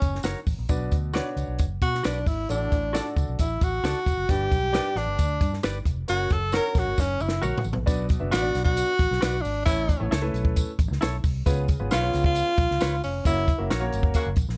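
A straight, driving 4/4 groove from a compact cocktail drum kit, with its punchy kick and high-tuned snare, pushes this urgent, passionate slice of uptempo 1960s-style soul. The kit's dry, natural sound is joined by a jingly tambourine tucked in the background. Underneath, a vintage muted electric bass plays fingered lines with a dark, round, amped tone. Up front, a breathy tenor saxophone carries the melody in a jazz-style solo full of vibrato, subtone and scooped notes, set in plate reverb. A semi-hollow electric guitar adds clean, compressed stabs with a hollow-body character, while a baby grand piano fills in natural-sounding accompaniment, both also touched by plate reverb. A drum fill at 7.0 seconds leads into the second half, a band accent lands at 13.3 seconds, and a tight, smooth-topped horn section adds a brief second line at 14.1 seconds, all within a dark, softly reverberant production that feels cut from a longer piece.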